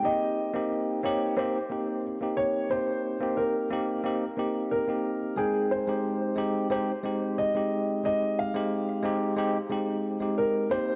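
A lush hall reverb with a 2.4-second tail surrounds this home cassette recording, cut from a longer chillout piece in F minor at 90 BPM in a straight 4/4. A dark concert grand piano carries the melody between Ab4 and F5, its mellow, intimate tone carrying audible action noise, deep bass and a vintage character, touched by analog delay. Alongside it, a bell-like tine electric piano plays the accompaniment from Ab3 to G5, sounding bright, clean and up front, with cassette tape coloring and its own analog delay. Both instruments play throughout the 11 seconds, moving from Eb6/Bb to a rootless Fm9 at 5.4 seconds. The mood is smooth and wistful.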